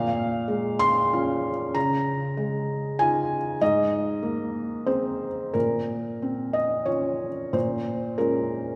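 Bathed in a wet concert-hall reverb with a 2.0-second tail, this wistful, reflective fragment of neoclassical minimalist piano features a solo felt-muted upright, soft, mellow and intimate, sitting up front as it moves with rubato in 3/4 through Bbm7, Dbadd9, Abadd9 and Bbmadd9 before returning to Bbm7 at 7.5 seconds.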